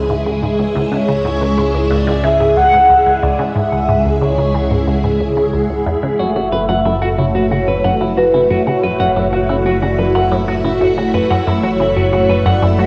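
Expansive and mysterious, this cut from a longer piece of sequencer-driven space music moves at 91 BPM in F# minor: a lush, vintage string machine holds sustained chords up front through phaser and ensemble chorus, over a fat, detuned analog bass and a squelchy, ring-modulated blip pluck riff steeped in phaser and tape echo. A round, horn-like synth lead enters at 0.9 s with vibrato, chorus and echo, and at 6.2 s, as the harmony moves from C#m to F#m7, a dark, clean semi-hollow electric guitar adds fingered arpeggios. A wet spring reverb and the grain of a home cassette recording frame the sound.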